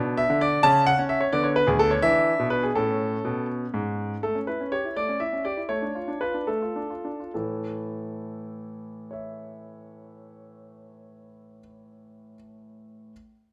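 In a 6/8 with free rubato at 66-88 BPM (dotted quarters), this dramatic, serious excerpt from a classical-period piano sonatina in A major sets a clear concert grand alone from D2 to A5, its intimate, polished tone carrying deep bass, long sustain and audible action noise up front in a moderate recital hall, easing into a slowdown between 3.5 and 7.3 seconds as the harmony moves from B minor colors through A7 and D minor over A before settling on A.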